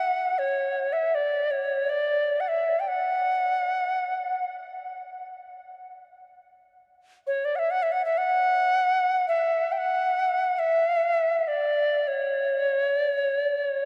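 In free time, this meditative, haunting world excerpt features a solo Native American-style cedar flute, bright, reedy and pure with a woody chiff and vibrato, sitting up front in the range from C#5 to G5 with delay, tongued phrases, and a huge, wet ambient reverb that lingers for 6.8 seconds around it, tuned to A4 = 439 Hz and running for 13.9 seconds.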